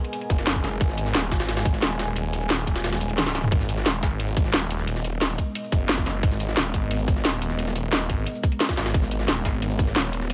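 A straight 4/4 pulse at 177 BPM drives this mechanical, dark piece of technical drum and bass in G# minor, cut from a longer track and sitting on a single G#madd9 chord. Up front, a tight, layered electronic kick pairs with a produced kit of cracking snare, metallic hats, shaker and toms, while a gritty, pitched-up jungle sampler kit with a high-tuned snare, ride cymbal and tape-warm compression sits in the background behind high-pass filtering. A snarling, growling saw bass, overdriven, saturated and sidechain-pumping, enters at 0.3 seconds and holds the low register with an aggressive, detuned unison edge and a moving notch. Behind it all, a deep, moody ambient pad sustains slow-attack chords with chorus, its own reverb and a long release. The kick drops out from 2.8 seconds, a drum fill at 3.2 seconds leads back into the drop, and the whole mix sits in a light digital ambience.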